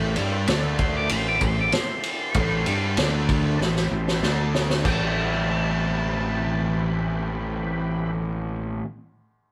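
A straight 4/4 groove drives this smoky, brooding blues rock and southern rock fragment, played by a band live in one room with moderate studio reverb. An up-front, double-tracked overdriven guitar riff sits over a growly fuzz bass and a punchy vintage drum kit with dark cymbals, while a gritty tonewheel organ holds sustained chords in the background through chorus vibrato and a slow rotary speaker. From 0.8 seconds an octave-fuzz lead guitar carries a high melody, and a drum fill from 3.6 seconds, soon joined by an organ fill, leads into a new section at 4.9 seconds, just as the drums drop out.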